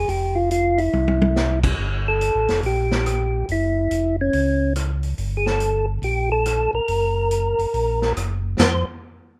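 Greasy and soulful, this swinging soul jazz organ trio excerpt at 141 BPM pairs a percussive tonewheel organ melody with third harmonic percussion and a mellow, key-clicking tonewheel organ bass, both round and dark through slow rotary speakers, over a gritty, saturated vintage drum kit with dark cymbals and a tight kick that plays a fill from 0.9 to 1.4 seconds, all in light reverb with chords moving from Fsus2 through Gm9 and Gb5 to F5.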